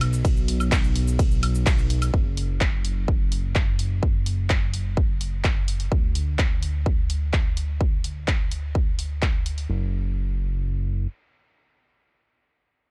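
A fat, detuned analog bass dominates this euphoric, anthemic festival progressive house excerpt at 127 BPM in straight 4/4, its sawtooth, square and triangle tones roughened by ring modulation and pumping against the sidechain in the F#1 to D2 range. The track opens on a drop, and from 2.1 seconds a filter sweep works through the sustained, fast-attack bass, giving its thick low end a mellow glow. A punchy, layered electronic kick drum sits up front from almost the very start, while a big-room dance kit fills out the groove with handclaps, hi-hat, ride cymbal, cabasa and woodblock. The kit falls away at 9.7 seconds, leaving the bass to carry on alone until 11.1 seconds. The production is dark, set in a digital ambience.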